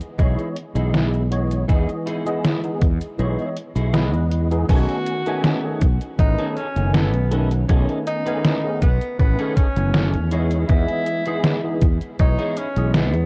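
A detuned 8-bit drum machine opens this faded, woozy vaporwave fragment with cabasa, hi-hat, snare and crash. It is joined almost at once by a thumpy, up-front electronic kick, a growly fretless bass, a clean tine electric piano and a twangy, picked guitar riff, with the piano and guitar both washed in ensemble chorus and analog delay. The kick drops out from 3.2 to 4.7 seconds, and at 4.7 seconds a distant, roomy tenor saxophone takes the melody with light vibrato and analog delay as the harmony moves from Emaj7 to B13 and back, all of it sitting dry on worn, warbling cassette tape with drifting pitch.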